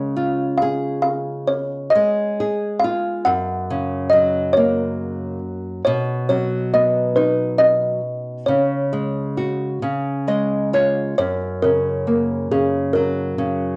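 A soft, tape-worn home recording with a wet studio reverb carries this tender, gentle lullaby excerpt in F# major, drifting in a rubato 6/8 at about 46 BPM, as a woody, hollow-boxed kalimba sings the melody up front over fingerpicked nylon-string guitar accompaniment that adds a fill from 9.8 to 11.2 seconds, moving through C#, F#, B and C#sus4 before settling back on F#.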